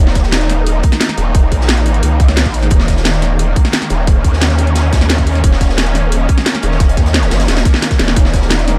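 A swarming, detuned drone and an aggressive growl bass open this tense, futuristic excerpt of dark technical drum and bass at 176 BPM, the drone sustaining chords under built-in reverb and sidechain pumping while the bass growls and wobbles through a formant filter with chorus and overdrive, sitting bright and up front. An overdriven electronic kick lands tight and prominent from 0.2 seconds, layered with a produced drum and bass kit whose cracking snare and bright hats carry a small-room character. Beneath them, a gritty, saturated breakbeat kit with a medium-tuned snare and rolled-off top sits in the background, its hats, snare and room all high-pass filtered. A drum fill runs from 7.5 to 8.2 seconds, and at 8.2 seconds a soft, felt-muted upright piano slips in with brief arpeggios around Eb4, its audible action noise colored by tape echo and sidechain pumping. The whole mix sits in light studio reverb, keeping the mood tense.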